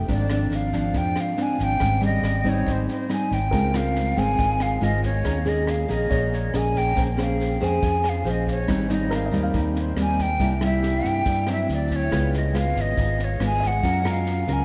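Drenched in cathedral reverb, this recording sits in a vast, echoing space, giving a romantic, breezy bossa nova a glowing, cavernous halo. At 140 BPM in a straight 4/4, a fingerpicked, classical-style nylon-string guitar carries the accompaniment up front, joined by a growly, amped fingered electric bass that anchors the low end. A breathy jazz flute sings the melody with soft attacks, expressive vibrato and lifted highs, rising as high as Ab5. A compact cocktail kit keeps time with a punchy kick, rim clicks and a dry, high-tuned snare, while a grainy egg shaker ticks distantly in the background. From 3.5 s a very quiet, clear concert grand piano adds short-sustained touches as the harmony drifts through lush chords such as Dbmaj7, Bbm9 and Gbmaj7 in this short cut from a longer piece.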